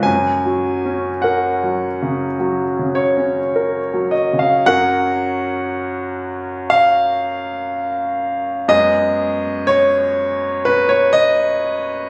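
Nostalgic and dreamy, this brief romantic nocturne for solo grand piano unfolds with unhurried rubato in 4/4, its clear, natural tone sitting up front with long sustain as it moves from an opening F# chord to a G#m7/F# at 8.7 seconds, all within a moderate recital-hall reverb captured on a phone in the room.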